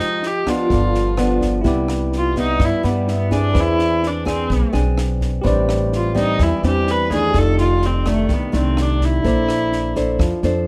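A sophisticated, sunny bossa nova fragment opens with a rich, reedy bowed viola carrying the melody in a gut-string, period style with light vibrato, over warm fingerpicked nylon-string guitar and a bell-like tine electric piano in the background. A compact cocktail kit with a punchy kick, rim clicks and a high-tuned snare joins almost at once, and a woody, thumpy pizzicato upright bass sits up front from 0.7 s. From 1.6 s the viola takes a solo over lush extended chords, all captured with close, detailed microphones and little reverb.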